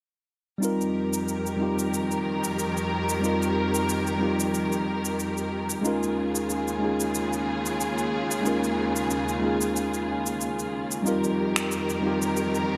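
From 0.6 s, a worn, slightly out-of-tune tine electric piano with digital delay plays relaxed, smooth, lightly swung sunset chillout chords while a lush, bowed studio string section with vibrato sustains chords, over a layered electronic shaker and finger snaps in gated reverb, the whole cut from a longer piece and set in a moderate plate reverb with bright 1980s-style digital production.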